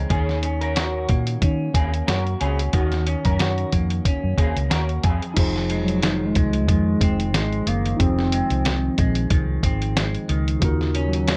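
A light reverb softens this short, hazy cut from a longer indie and bedroom pop piece, which moves at 91 BPM in 4/4 with a gentle sixteenth-note swing and a wistful mood. Up front, a compressed, pitched-down sampler-style drum kit thumps with a muffled kick, a medium-tuned snare, hi-hat and crash, while a dark, foam-muted fingered bass gives a round, punchy low end. A clean, picked semi-hollow guitar carries the chords, Ebm7 moving to Fm, its tone shimmering with subtle chorus, a warbly pitch drift and plate reverb. Early on, a slightly broken-up second guitar through a small old amp adds a lo-fi line soaked in ensemble chorus, plate reverb and analog delay, dropping out near 5.2 seconds. From 5.3 seconds a worn, slightly out-of-tune tine electric piano settles into the Fm7 harmony, and at 5.8 seconds a woody, clarinet-like synth lead takes the melody with soft vibrato, lush chorus and delay before the chords return to Ebm7.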